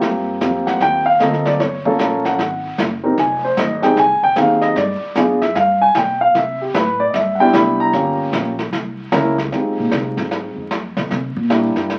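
Swung eighth notes in 4/4 carry this short jazz piano trio passage, cut from a longer piece, with a sophisticated, warm mood. A dark, mellow concert grand sits up front with the melody and a deep, natural low end, taking a featured solo until 9.5 seconds. From there to the close at 12.0 seconds the plucked upright bass steps forward for its own solo, its gut strings sounding woody and thumpy. The brush kit of snare, hi-hat and kick plays throughout, airy and polished in a small room, with a medium-tuned snare and a boomy kick. The harmony moves through rich chords such as Eb69, Fm9, G7b9 and Cmaj7, with a brief stretch where the chords drop out, and the whole recording carries a wet studio reverb and the crackle of a very old 78 rpm record.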